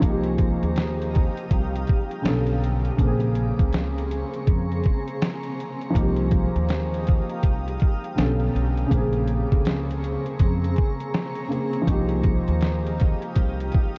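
Hazy and melancholic, this lo-fi hip hop excerpt in Bb dorian sways at 81 BPM with a swung 16th feel, as a gritty, pitched-down boom bap sampler-style kit with a thumpy kick and hi-hat drives alongside a woody pizzicato upright bass that stops at 13.7 seconds, an intimate felt-muted upright piano with audible action noise and cassette tape coloring, and a blurred, evolving granular cloud pad with its own reverb, all cycling through chords from F9sus4/C to Bm9 and Bbm9 in a small, lightly reverberant room.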